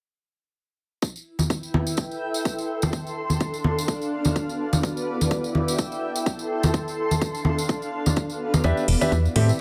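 A swung 4/4 groove of punchy, tape-warm electronic kick and ringing tambourine and congas drives this bittersweet, energetic piano house excerpt from 1.0 s, with a cloudy, evolving granular pad that pumps with sidechain drifting in at 1.7 s over shifting seventh chords, before a clear grand piano riff carrying vintage sampler grit and digital delay arrives at 8.6 s alongside a round, dark FM bass, both pumping with sidechain and soon joined by metallic electronic hi-hats in a light digital ambience.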